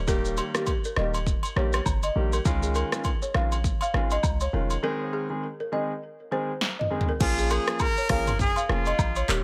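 A boomy 808-style bass opens this sultry, mellow afrobeats excerpt, joined at once by a polished grand piano, a woody balafon riff with delay and a punchy deep house drum kit, while agogo bells and woodblock add light percussion; a break arrives at 4.8 seconds, a drum fill follows at 6.6 seconds, and a clear, lightly vibrato trumpet with delay takes the melody from 7.2 seconds, all in a small room.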